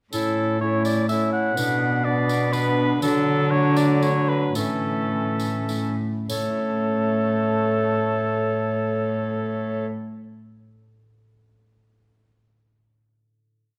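From the first moment, a festive, courtly renaissance-style consort dance in 3/4 and A major sets off at 96-125 BPM, with a warm oboe carrying the melody up front with light vibrato over an airy, chiffy tenor recorder and a brilliant, distant trombone playing chords in the rhythm of the tune, a rich gut-string cello bowing sustained bass, a ringing fingerpicked concert harp in the background marking bass and chords on the beats, and a jingly tambourine dance rhythm, heard through close, detailed microphones in a moderate recital hall, slowing from 2.3 seconds into a closing chord at 6.3 seconds that the harp lets ring until 10.2 seconds.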